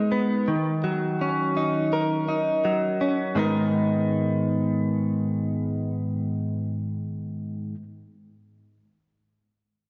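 A lush hall reverb with a long 2.5-second decay wraps this short rock fragment in a big arena sound, its top end rolled off above 7.6 kHz so the whole recording feels dark and enveloping. A single clean electric guitar, recorded direct, picked and compressed, sits up front and plays arpeggios from 0.0 to 7.8 s, ranging from G#2 up to A#4. A lush chorus and a slapback echo thicken each note, giving the guitar a shimmering, doubled quality against the cavernous room. The harmony settles on D#m7 before shifting to G#madd9 at 3.4 s, where a new section begins. In straight 4/4 time, the mood is brooding yet cathartic, as if the piece is caught mid-thought from a longer work.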